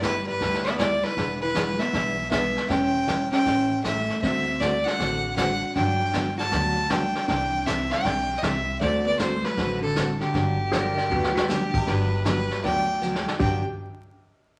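Vinyl crackle and a wet, large-studio reverb give this cheerful, swinging western swing excerpt in G major an old-record glow at a brisk 157 BPM. A clear, biting fiddle with light vibrato and an airy bow carries the melody up front, while a dark, clean hollow-body jazz guitar plays a second line over a bright picked dreadnought acoustic, a woody, thumpy pizzicato upright bass, and a brushed vintage kit with dark cymbals and a punchy kick. At 10.7 s a clean, compressed lap steel enters with slide and volume swells as a second line, and the drums add fills at 11.1 s and 13.0 s over changes that move through E7, A7/E, D7, Gmaj7 and Cadd9.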